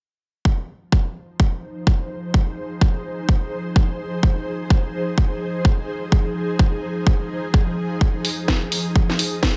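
A punchy, tape-warm electronic kick opens this bass house excerpt at 0.5 s, sitting up front in a large-room reverb and driving a bouncy, aggressive groove with swung sixteenths. From 1.6 s an ethereal, mellow pad of detuned unison saw, triangle and sine layers with a sub octave fades in slowly and sustains, thickened by ensemble chorus and tremolo and pumping against the kick. At 8.2 s a layered garage kit adds filtered hi-hats and a cracking, muffled snare in a digital ambience.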